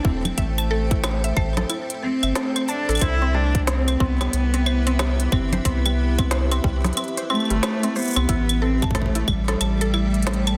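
A swung 4/4 groove of overdriven electronic kick and an organic electronic kit of woody snare, crisp hi-hat, claves, congas and shaker, all re-recorded in a large room, drives this cerebral, eerie IDM fragment, with the kit entering at 0.3 s and the tight kick dropping out at 9.4 s. A round, deep analog bass sits up front beneath an icy, crystalline pad of chorused, reverberant chords with 12-bit sampler grit, while a woody, FM-tinged mallet pluck spins bright arpeggios through chorus, phaser and delay. Through it all, a single close, intimate cello sings a soft-bowed sul tasto melody with light vibrato, touched with sampler grit and delay, as the harmony moves from Am7 to Cmaj7 and lands on A7(no3) at 8.3 s in a dense, heavily limited mix.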